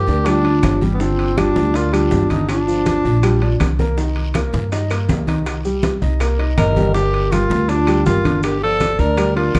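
Lightly reverberant and dark-toned, this short, driving Afro-Cuban jazz cut in G minor runs at 162 BPM over a fiery Gm7 to Cm7 and back to Gm7 progression. An up-front, breathy tenor saxophone with light vibrato and scooped notes carries the melody, shadowed by a distant clay ocarina with slapback echo, the pair breaking off at 3.6 seconds and returning at 6.6. Beneath them sit an intimate grand piano with audible action noise, a woody, thumpy pizzicato upright bass on gut strings, and a percussion bed of ringing low congas, metal-shell timbales, tight high bongos, dry claves, a raspy guiro and grainy maracas.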